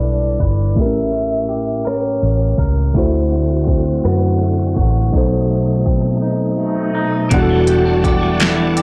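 A soft, round synth lead with a sub octave, chorus and phaser opens this sultry, yearning slow R&B excerpt in six-eight, over a worn, slightly out-of-tune electric piano with light overdrive, a dark, foam-muted fingered bass and a bright, twangy clean guitar line, as a filter sweep runs through the opening stretch. A smooth, tape-warm drum kit with a fat snare, crisp hats and rim clicks joins at 0.4 seconds, and a reedy tonewheel organ with key click and fast rotary speaker adds sustained chords from 2.9 seconds while the lead falls silent. After a break, the lead returns at 7.3 seconds on a new section, all within a blown-out, overdriven, low-passed recording with light reverb.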